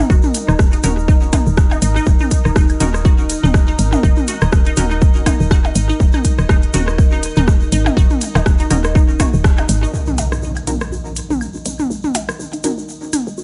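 An echo-heavy, digital-sounding excerpt of clinical, cool minimal techno at 122 BPM with a light 16th-note swing, where a punchy, up-front electronic kick drum drives until 9.6 s over a round, woody FM bass pumping with sidechain, crisp house-kit hats and rim clicks, a minimal click kit of claves, blips, rim clicks and toms, a distant, grainy egg shaker, a squelchy resonant blip pluck riff through phaser and tape echo, muted dub chord stabs in lush chorus, a deep, moody ambient pad, and a very quiet pulsing gated texture, before an electronic impact lands at 9.9 s.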